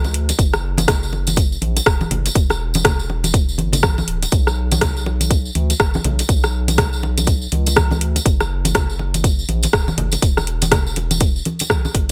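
A round, dark analog bass with a pumping sidechain opens this earthy afro house excerpt alongside bright, close-miked congas struck with hard hands and a jingly tambourine set in a small room. The house drum kit's metallic hi-hats and rim clicks arrive at 0.1 seconds, followed by a punchy, up-front electronic kick at 0.4 seconds, all riding a swung sixteenth-note feel. Cut from a longer piece, this driving groove sits in a digital ambience, with the deep, sustained bass held prominently forward.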